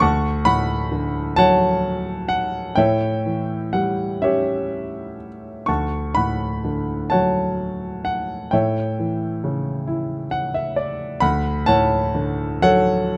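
Calm and warm, this brief fragment of a lyrical classical piece for solo piano unfolds in D major at a slow, rubato 6/8, roughly 41-46 dotted-quarter beats per minute. The grand piano sounds clear and intimate, placed up front with the mechanical noise of its action audible, ranging from D2 to C#6 as the harmony sways gently between Dmaj7 and A7 before settling back on Dmaj7 at 11.2 seconds. A short piano fill arrives from 9.9 to 11.2 seconds, and close, detailed microphones with light reverb keep the sound natural and near.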